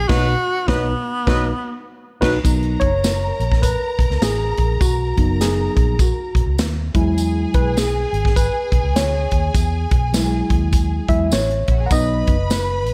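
A breathy, close-miked tenor saxophone with slapback echo opens this uplifting, danceable 1960s-style soul excerpt over a round, foam-muted electric bass, tine electric piano, a punchy acoustic drum kit with bright cymbals and a smooth background horn section for a brief band accent. At 2.4 s a lush bowed string section with slapback echo enters, and at 2.5 s a jingly tambourine joins as the worn, slightly out-of-tune electric piano takes an up-front solo in a small room with light reverb.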